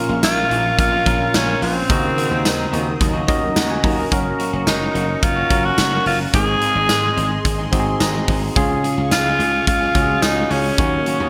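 1980s-style pop with a glossy, romantic mood, cut from a longer piece, where a raspy, gritty tenor saxophone with delay carries the melody up front over a big rock drum kit with gated reverb, punchy slap bass and a bell-like tine electric piano that adds fills at 3.0 and 7.5 seconds. A swirling phased analog pad sustains chords in the background, a slightly broken-up electric guitar plays a very quiet riff, and mellow synth brass stabs appear only between 3.0 and 4.1 seconds during a band accent. The bright digital production sits in a lush hall reverb as the chords move from Bbm through Ebm7, Gb, Ab and Db.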